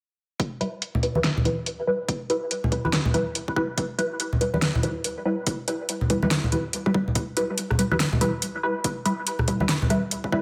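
Dark and heavy, this half-time, swung deep dubstep excerpt pairs a punchy, overdriven electronic kick with a fat-snared house kit of metallic hats and rim clicks, while up-front acoustic congas join at 0.9 seconds and a detuned sawtooth-and-square dub chord stab, muted yet bright with a fast attack, is filter-swept through phaser, lush chorus and dub echo over a single E minor chord in a digital room ambience.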